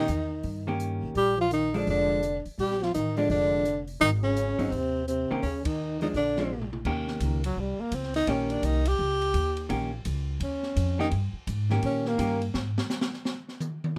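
Small-group swing and bop jazz at a brisk 169 BPM in 4/4, this sophisticated, warm excerpt from a longer piece swings its eighth notes and centres on Eb mixolydian, moving through Eb7, Bb7 and Ab before an Eb9sus4. A breathy, whispered tenor saxophone carries the melody up front with subtone, vibrato and scooped notes, joined at first by a mellow trombone on a second line that drops out at 6.7 seconds. A dark, clean hollow-body electric guitar provides a compressed, picked accompaniment, while a woody pizzicato upright bass sits up front beneath them. An open acoustic drum kit with dark cymbals, a high-tuned snare and a punchy kick marks a band accent and a short fill before the tenor launches into a solo at 6.9 seconds. The chords fall away at 12.5 seconds as the drums take a brief solo, all captured close and intimate with little reverb.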